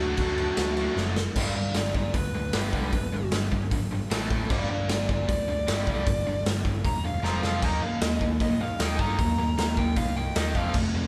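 The raw garage drum kit stands out most, sitting up front with a punchy kick, a medium-tuned snare, crash and hi-hat, its sound gritty and saturated with a pumping stone-room character and a rolled-off top. This rebellious, upbeat punk rock cut from a longer piece runs at 153 BPM in 4/4. It opens in half time over a D chord, and a drum fill at 1.0 seconds leads into a full-time stretch where the bluesy overdriven lead guitar takes a solo from 1.4 seconds, its dark, distorted tone ranging from F4 to Bb5. Beneath it, two bright picked guitars, one overdriven and one tight and distorted, play riffs in the background, while the growly, amped electric bass adds a punchy low end down to E1. The chords move from G through A5, G5, F5 and Eb5, with a second drum fill at 7.2 seconds and a landing on F near the end. Light reverb and the feel of a band playing live in one room give the whole track an immediate, rough-edged energy.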